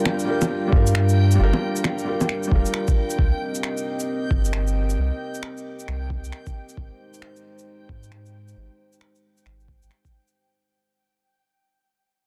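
Nocturnal and rainy, this future garage excerpt sets a felt-muted upright piano, intimate with audible action noise and tape echo, over a detuned, nasal analog pad with chorus and a reversed, granular swelling texture, while up-front electronic finger snaps, bongos and shaker, a thumpy overdriven electronic kick and a round, sidechain-pumped dub sub bass swing through Gm7, Cm7 and Abmaj7 in a dense, dry, heavily limited mix that fades out across its length, with the piano dropping away at 3.2 seconds.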